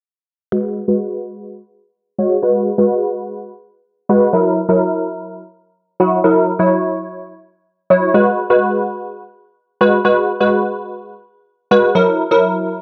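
A crisp, detuned wavetable chord stab sits up front from 0.5 to 12.8 seconds in this energetic, confident pop fragment, its bright, decaying hits shaped by a low-pass filter sweep and cassette tape coloring as they move between G#m7 and F#7, all inside a moderate spring reverb and digital ambience on a home cassette recording cut from a longer piece.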